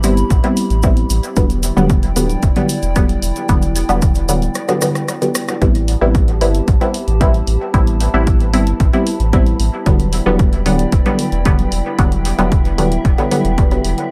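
A punchy, tape-warm electronic kick drives this hypnotic, hazy dub techno excerpt at 113 BPM in A minor, entering at 0.3 s and sounding re-recorded in a small room. Muted, detuned dub chord stabs with a filter pluck sit up front and carry the harmony between Am7 and Em7. They are coloured by chorus, phaser, cassette tape and dub echo, and they pump against the kick along with a round sine sub bass. A warbling, nostalgic tape-like pad holds sustained chords above, lo-fi and mellow in its chorus and built-in reverb, while a layered deep house kit adds dark hi-hats and rim clicks. A grainy, close cabasa sits in the background through a break with a drum fill at 4.6 s and stops at 5.6 s, after which an airy, breathy wind-like noise texture drifts in at 6.3 s. The whole mix is echo-heavy with light reverb, cut from a longer piece.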